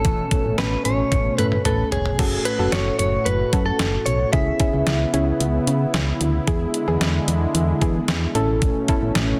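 A straight 4/4 pulse at 112 BPM comes from a detuned 8-bit drum machine, overdriven and up front, with a thumpy kick, a medium-tuned snare, hi-hat, toms and crash cymbal, and it plays a fill near the end of the opening bars. This melancholic, nocturnal synth-pop fragment in F# minor, cut from a longer piece, rests on a punchy, round FM bass with a fast attack and a dark, decaying tone, beneath a warm, smooth, detuned sawtooth pad whose mellow, slow-attack chords are treated with chorus. A clean, in-the-background tine electric piano plays arpeggios through digital delay until 2.1 s. At 2.2 s a soft, gentle pluck enters as accompaniment, blending triangle, sine, sawtooth and a noise layer with chorus. A bright, compressed, picked electric guitar recorded direct carries the up-front melody through digital delay until 6.2 s. The harmony moves from Aadd9 through F#m, C#m7 and E7 before returning to Aadd9, all set in a lush hall reverb within a dense, heavily limited modern master.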